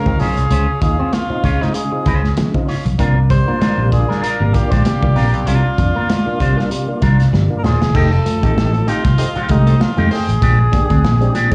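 A strutting funk groove at 97 BPM in 4/4, swung lightly on the sixteenths and tuned a touch sharp of standard pitch, this energetic cut from a longer piece rides on a crunchy breakbeat kit with a punchy kick, medium-tuned snare, dark cymbals and a gritty, saturated, rolled-off character, set up front beside a fingered electric bass that sounds amped and warm. A mellow cor anglais carries the melody with light vibrato and a classical poise, bathed in plate reverb, while a warm horn section plays a second line in the background with punchy, pop-style phrasing, plate reverb and slapback echo, dropping out at 10.3 seconds. A tonewheel organ adds lightly overdriven stabs with audible key click, fast rotary speaker and slapback echo. Two guitars fill the middle: one through an envelope filter, twangy and scooped with plate reverb, playing accompaniment, and a clean, compressed guitar tucked behind it repeating a riff through ensemble chorus. 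The harmony moves from Dbmaj7 to C9sus4, and after a drum fill at 7.3 seconds a second section opens on F9 and turns to Bb13, all heard as a live gig through the venue's PA with club reverb.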